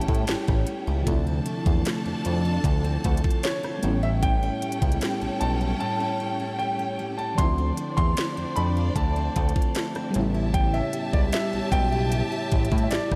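Contemporary R&B with a longing, late-night mood, unfolding at an unhurried pace in a straight 4/4 feel over a cycle of A7 and Dm7 chords. A clear grand piano carries the melody high in its register, intimate enough that the action noise is audible, its long sustain trailed by analog delay. Underneath, an FM electric piano layered with a soft pad sits dark and in the background with chorus, while a picked steel-string acoustic guitar plays bright arpeggios, finger squeaks catching on fresh strings, also echoed by analog delay. A bowed studio string section holds sustained chords with vibrato and portamento, breathing with sidechain pumping. Up front, a fat, saturated analog bass with a nasal sawtooth edge and a trap kit of knocking kick, sharp snare, crisp hats and rim clicks drive the groove, with a break from 5.8 to 7.4 seconds, and the whole dreamy mix is soaked in a lush hall reverb.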